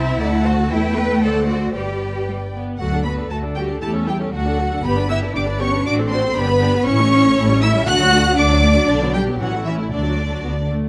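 A full string orchestra opens together at once in a quick, spirited classical-period movement in D major, moving at 118 BPM in a straight 2/4 with a graceful lilt. The first violins carry the melody high above the ensemble with a focused, vibrato-laden tone, while the second violins trace a lush, soft-attacked second line beneath them. The violas fill in the accompaniment with expressive portamento, sounding slightly distant, and the cellos add a rich, close bass line. Under them, the double basses are dark and up front, bowed with a smooth top and a gentle slide between notes. Light reverb and close, detailed microphones keep the texture clear as the opening phrase gives way to a longer second section at 2.8 seconds, with the strings and bass parts closing out this excerpt by about 10.9 seconds.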